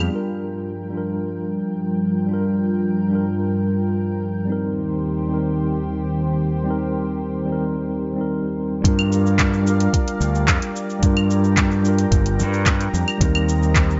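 A growling, amped fingered electric bass returns in earnest at 8.8 seconds with a deep house kit of overdriven cabasa, claves, handclaps and metallic hi-hat plus a soft electronic kick, joining a mellow tine electric piano with tape echo and a lush, detuned unison pad warbling with chorus and vintage 12-bit sampler grit, both of which have been moving between Gm7 and Eb6 from the opening of this relaxed, smooth sunset chillout excerpt at 110 BPM in straight 4/4, set in light digital reverb.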